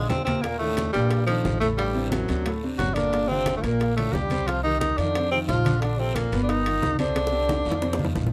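A moderate studio reverb gives this short excerpt of sunny, sophisticated Afro-Cuban jazz an airy sheen as it moves briskly at 179 BPM in a straight 4/4. Up front, a breathy tenor saxophone carries the melody with an intimate, whispered tone, soft attacks, scooped notes and vibrato. Behind it, a trombone with a plunger mute plays a clear, wah-wah second line. A natural-sounding baby grand piano supplies warm accompaniment through changes such as Ebmaj7, Gm7, Bbmaj7 and Gaug7, while a woody pizzicato upright bass with steel strings anchors the low end. In the background sit low-tuned, thick-skinned congas, tight high-pitched bongos, ringing metal-shelled timbales and a raspy guiro, and a drum fill runs from 7.2 seconds to the close at 8.3 seconds.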